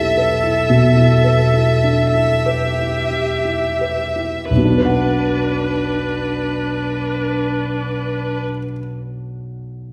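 Set in a rubato 12/8 at a slow 28-39 BPM in dotted quarters, this solemn, melancholic romantic movement for piano quartet in B minor slows down through its opening 4.5 seconds, moving from an E minor chord over B to B minor. A rich, smooth violin carries the melody with vibrato alongside a bowed viola accompaniment whose tone is warm and even, while a dark, mellow grand piano with audible action noise and a vintage, intimate character sits up front and continues alone after the strings stop at 8.4 seconds. The ensemble is heard from further back in a wet recital hall with a 1.8-second reverb, in a passage cut from a longer piece.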